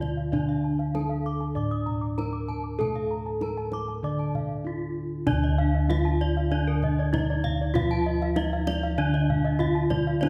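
Round, mellow bossed gongs sit up front in this brilliant, shimmering Balinese gamelan passage in straight 4/4, anchoring the bass beneath a bright, horn-mallet bronze metallophone melody with slapback echo and paired-tuning beats, a wooden-mallet metallophone accompaniment, two ringing metallophone arpeggio lines (one struck with horn mallets and the other, entering at 0.2 seconds, with wooden mallets, sitting mid-forward), and a tight kendang played with soft hands in the background, all heard from further back in a wet recital hall.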